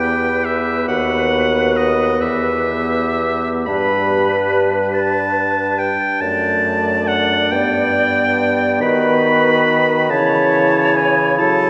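A slow, lyrical classical movement for wind quintet in a rubato 6/8 at 39-48 BPM opens with all five players together: a pure, distant silver flute carries the melody beneath a bright, up-front oboe second line with light vibrato, while a mellow, roomy clarinet and a soft-attacked, vintage-toned French horn accompany and a close-miked bassoon holds the bass, moving from E minor through G and D/F# to A/C# at 10.1 seconds, all bathed in a long, wet church reverb in this brief cut from a longer piece.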